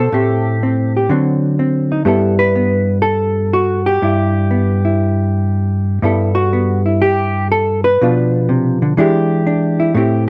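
A dry, close 1970s-style studio sound with light reverb frames this swinging, warm solo jazz excerpt, where a lone electric hollow-body guitar, fingered, dark, clean and compressed, sits up front for the full 10.3 seconds with a loose rubato swing, moving through Am7, D7b9 and G69 before reaching Bdim and E7#9 near the close.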